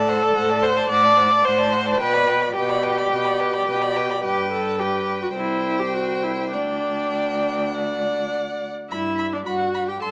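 Moving in a rubato 4/4 at roughly 98-112 BPM, this quick classical-period movement for string quartet sounds cheerful and spirited, centred in G major and tuned slightly low at A4 = 437 Hz. Two bowed violins share the upper register, the first carrying the melody high up and the second supplying a supporting line beneath it; both have a rich, expressive tone with vibrato and portamento, and sit at a distance in the mix. The viola fills out the accompaniment with a clear, smooth and even voice, placed up front and noticeably more present than the others, while the cello anchors the bass with vibrato, gentle attacks and expressive slides. The harmony passes from D7/A through G/B, G, C5 and Dsus4 before settling on G at 8.9 seconds, where a new section begins. A moderate large-studio reverb surrounds the quartet, though the overall sound has a small-speaker quality, and this short excerpt is cut from a longer piece, ending at 10.1 seconds.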